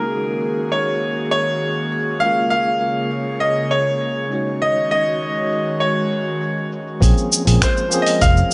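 A bright grand piano with a delay carries the melody over a gritty, vintage-sampled tine electric piano and an airy, breathy chorused pad in this smooth sunset chillout excerpt in Bb minor at 100 BPM, where a dusty, low-passed soul drum kit of cabasa, finger snaps and hi-hat taps along from 0.1 seconds and is joined by a round, dark fretless bass and a thumpy electronic kick at 7.0 seconds under a Bbm9 chord, all set in a moderate digital room.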